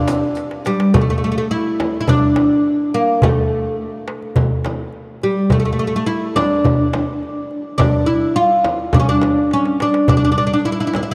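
Arabic maqam ensemble music in D maqam nahawand at 105 BPM in straight 4/4, longing and soulful, cut from a longer piece, where a woody, deep, fretless oud with double strings carries the melody up front through analog delay over a crisp, close metal-shell darbuka and a frame drum set in a live room, while a riq's bright jingles sound briefly in the background only until 0.7 seconds, drum fills arrive at 0.4 and 9.5 seconds, and the dreamy mix is soaked in plate reverb with a cassette-tape character.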